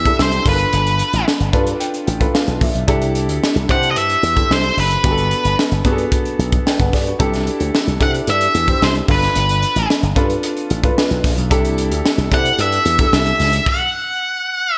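A straight 4/4 groove at 111 BPM drives this breezy, urban slice of polished 1980s jazz-funk pop, cut from a longer piece. The acoustic fusion kit sits up front with a high-tuned snare, punchy kick, crash and hi-hat, its gritty, saturated sound pumping through a small room and gated reverb. Beneath it, an electric slap bass pushed through an envelope filter sounds bright, growly and direct. A smooth, vintage-toned grand piano with subtle chorus comps over a cycle of G9, C6 and Gmaj9 chords, adding a fill at 1.3 s. On top, a picked octave-fuzz electric lead guitar carries the melody with a warm, distorted edge, and it rings on alone after the band stops at 13.7 s. Moderate plate reverb and a bright digital sheen give the mix its glossy period character.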